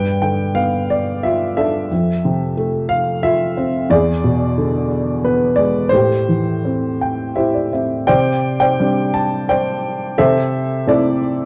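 Cool and moody, this short piece of lyrical classical solo piano is cut from a longer work and moves in an unhurried 3/4 at roughly 82-92 BPM, its rubato feel letting the time breathe. A single upright piano carries everything, ranging from E2 up to A5 with a woody, intimate tone and audible action noise that keeps it close and up front. The harmony drifts through G7, F and E7 before settling on Am7 in A minor, and the piano plays a brief fill from 6.6 s to 8.1 s. At 8.1 s the music turns toward C major on a Csus2, later resting on Am/C. A moderate recital hall reverb surrounds the natural-sounding instrument, and the overall production is dark and warm.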